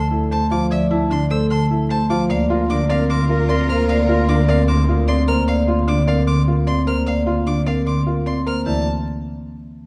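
A mellow, ringing vibraphone played with soft mallets carries the melody in this propulsive, bright minimalist classical excerpt at 151 BPM, over a woody rosewood marimba, a clear, close solo violin and an intimate vintage grand piano with audible action noise spinning arpeggios, all anchored by a bowed double bass holding D2. From 2.3 to 5.2 seconds, a distant, dark clarinet adds a second line while a rich chamber violin section sustains chords in the background, as the harmony moves from Dm7 to Bb/D. A moderate recital hall reverb and vinyl crackle give the production a dark, warm character.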